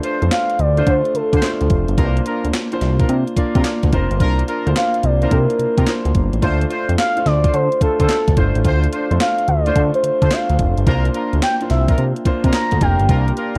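A swung sixteenth-note groove in 4/4 drives this slick, punchy new jack swing R&B excerpt, built on an up-front, overdriven drum machine with a thumpy kick, a gated-reverb snare, handclaps and hi-hat, while a fat, nasal analog bass with a fast attack and a filter pluck joins at 0.2 s. A concert grand piano with deep bass and long sustain comps through alternating Dm7 and C9sus4 chords, jazz-style horn stabs with light vibrato and tape echo punctuate the groove, and a smooth, dark sawtooth synth lead with chorus, vibrato and a moving notch carries the melody from 0.3 s to 13.1 s. The sound is dry and close, like a 1970s studio recording.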